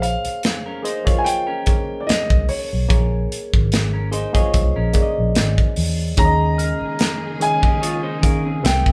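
Cinematic and smooth, this short cut of lush 1970s-style soul moves at 73 BPM with a light 16th-note swing, as a deep-voiced grand piano carries the melody over a barky, reedy electric piano colored by phaser, a round, foam-muted fingered bass and a punchy, polished drum kit of kick, snare and hi-hat in a live-room sound, while a twangy, slightly broken-up guitar riff enters at 0.7 seconds, then bowed strings with vibrato glow in the background from about 6.2 seconds as the harmony shifts from Bbm9 to Eb7sus4, joined at about 6.6 seconds by a soft, bell-like rubber-mallet glockenspiel.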